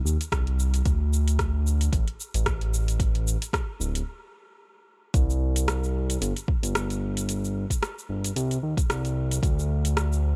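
A smooth, saturated synth bass of sawtooth and square tones sits up front with sidechain pumping and a moving notch as a deep house kit of cabasa, metallic hi-hat and rim click sets an earthy, warm organic downtempo groove with a swung 16th feel in 4/4, a deep, layered electronic kick joins at 0.3 seconds, and after a stop from 4.1 to 5.1 seconds the music moves into a new section in a digital ambience, cut from a longer piece.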